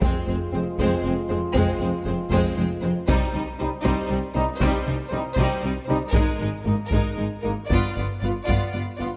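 An epic orchestral film score cut from a longer piece, this 9-second passage moves at 78 BPM in a straight 6/8, with an adventurous, heroic mood over a chord progression of Fm, Cm, Absus2 and G7. A rich, distant section of symphonic violins carries the melody in the Bb4 to D5 range, smooth and even with vibrato, while a clear chamber violin section plays a second line beneath it. A bright, intense viola section sits close in the accompaniment, and a French horn section holds sustained chords with a roomy, classical-style tone. Woody cellos with a soft attack and lush double basses form the bass in the background, both bowed with vibrato. A taiko ensemble struck with hard sticks is the loudest part, close and dry, driving the passage on a moderate scoring-stage reverb that gives the whole a dark production.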